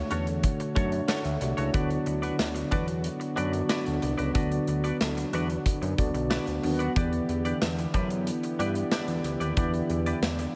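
A tine electric piano, a brassy analog pad and a fat, saturated analog bass with a nasal sawtooth edge open this cut from a longer 1980s-style pop piece, the piano clean and direct while the bold, detuned pad, treated with chorus and vibrato, sits in the background. A twangy guitar riff recorded direct, touched by subtle chorus and delay, joins almost at once alongside a big acoustic rock drum kit. The drums sit up front with a punchy kick, medium-tuned snare, hi-hat and tambourine, bathed in gated reverb. The mood is urgent yet nostalgic, with harmony moving from Dmaj7 to Bm and then to Em7 at 7.0 seconds. A band accent lands from 4.4 seconds, and at 5.3 seconds a round, dark synth brass adds stabs with chorus and delay set back in the mix, while light studio reverb ties the sound together.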